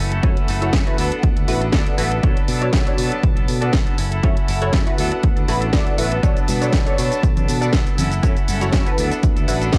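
This groovy, nostalgic slice of filtered disco house opens at once with a rich, floating violin section holding soft-bowed chords in the background, a bright, twangy clean electric guitar picking a riff through tremolo, and a growly fingered electric bass. Almost immediately, at 0.1 seconds, a layered house kit enters, its cracking snare, hi-hat and shaker sounding re-recorded in a large room, and at 0.2 seconds a punchy, overdriven analog kick lands up front. A funky, nasal polysynth comp with detuned sawtooth and pulse tones, a sub octave and a filter sweep adds chorus, phaser and cassette-tape colour. Sidechain pumping and a low-pass filter give the strings, guitar, bass and synth their breathing, muffled disco character over a gently swung groove cycling through minor-seventh and sixth chords. At 6.2 seconds, ringing tambourine and soft-handed congas slip in from a small room in the background, all within a dry, gritty hardware sound cut from a longer piece.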